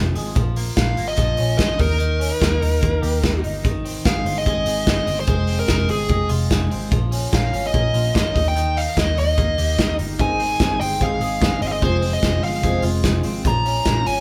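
Nostalgic and bright, this short cut of jangly indie pop moves at 147 BPM in a straight 4/4 in Ab major, cycling through Bbm, Eb, Ab and Fm. A clean, compressed twelve-string electric guitar picks arpeggios over a round, foam-muted vintage bass and a punchy, up-front acoustic drum kit with a pumping room sound, while a dark, overdriven lead guitar carries the melody from 0.8 seconds. At 10.2 seconds a full-bodied fingerpicked steel-string acoustic guitar with fresh strings joins in the background, all captured as a band playing live in one room with moderate studio reverb.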